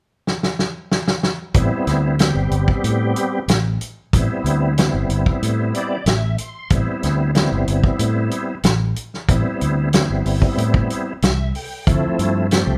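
A drum fill opens this brooding, soulful slice of straight-eighth soul blues in A minor at 93 BPM, the kit dry, mid-forward and up front, with a medium-tuned snare, tight kick and rolled-off top. At 1.5 seconds the fingered electric bass and tonewheel organ come in together, and the groove settles on a long stretch of Am7 before turning to Dm7 near the end. The bass is warm, round and punchy, its direct, amped tone holding down the low end. The organ is reedy, bright and clean, with audible key click, chorus vibrato and a slow rotary speaker, and it steps forward with short fills around 5.4 and 10.9 seconds. Light reverb gives the feel of a band playing live in one room, and the passage is cut from a longer piece.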